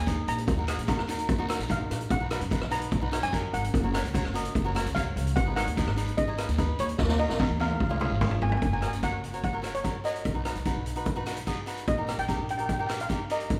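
Carefree and festive, this calypso excerpt moves in a straight four-beat feel and is heard as a cut from a longer piece. A shimmering double seconds steel pan, struck with hard rubber sticks, carries the melody in a bright, metallic upper register. Beneath it, a pizzicato upright bass with gut strings gives a woody, dark, thumpy low end, while a crisp picked cavaquinho fills in the accompaniment. The street-band drum kit sits up front with a boomy kick, a medium-tuned snare, rim clicks, hi-hat and toms, its sound mid-forward with a rolled-off top and a small-room character, and it plays a fill from 7.0 to 8.6 seconds before the music moves into a new passage. A raspy guiro stays distant in the background, and the whole ensemble sounds in a moderate recital-hall reverb, as if in a church or concert hall.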